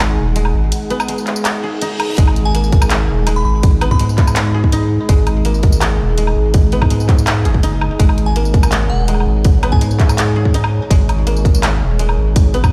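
The recording sounds like it is playing over a big sound system in a bare stone room, with a light reverb around it and a cinematic, spacious mood in this cut from a longer half-time drum and bass piece at 165 BPM in G# minor. From the start, a deep, dark ambient pad holds sustained chords with slow attacks, chorus and its own reverb, pumping against the sidechain, while a woody, mellow koto, played with fingerpicks, runs arpeggios through vintage 12-bit sampler grit and delay. Beneath them, a thick, saturated sine sub bass sits up front. The drum kit of handclaps, bright hi-hats, tambourine and woodblock enters at 0.4 seconds, a break follows, and a reverse cymbal rises into the hard-clipped, overdriven electronic kick that lands at 2.2 seconds. A crystalline FM synth bell adds brief melodic phrases in the background, treated with chorus, phaser and tape echo, over a single G# minor chord.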